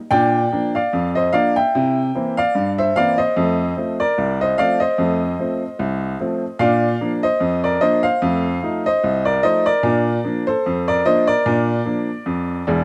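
Cheerful and jaunty, this short ragtime piano piece, cut from a longer work, moves at a relaxed 74 BPM in 2/4 with a light swing on the sixteenth notes, set in Bb major. A lone upright piano carries the whole performance from 0.1 to 12.8 seconds, ranging from deep bass notes at E1 up to G5. Its tone is woody and boxy with long sustain, and the mechanical noise of the action is clearly audible, giving an intimate, close-up character. The harmony steps from Bb through C7 and F7, returns to Bb at 6.6 seconds, then moves to F7 again before settling home on Bb at 9.8 seconds. The piano sits up front in a dry, open-air setting with little reverb and hardly any sense of a surrounding room.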